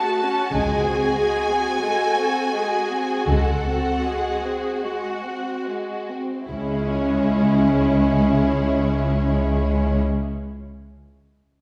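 A dark, woody violin section carries the yearning melody of this slow, solemn romantic movement for string orchestra, its vibrato and soft attack lending the line a veiled quality. Beneath it, a second violin section adds a warm, focused inner line, while the violas supply a rich, even bowed accompaniment. The cellos and double basses enter at 0.5 s and sit in the background, the cellos with a smooth top and the basses adding an expressive, lush foundation on a low C#. In C# minor and 4/4, the music moves freely with rubato at roughly 34-49 BPM, slowing through the opening passage over F#m and G#7/C# harmonies before settling on C#m at 6.5 s. A generous scoring-stage reverb places the ensemble further back in the room, and the passage is cut from a longer piece.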